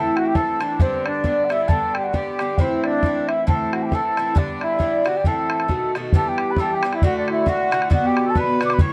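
A dark production sits in a moderate studio reverb, with the picked bouzouki and the close, dry bodhran placed up front. This spirited Celtic folk polka is cut from a longer piece and drives along at 135 BPM in 2/4, with a light swing on the eighth notes and a home in A dorian. A mellow wooden baroque flute carries the melody in an airy, straight tone with tongued notes and rolled-off highs. Beneath it, a reedy accordion plays a second line with a slow beating in its sound. The metallic double strings of the acoustic Irish bouzouki supply a warm accompaniment, and the tight, damped bodhran joins at 0.2 s. The harmony moves between Am and G, touches B7, and shifts at 6.1 s into a new passage over Em, D and Bm.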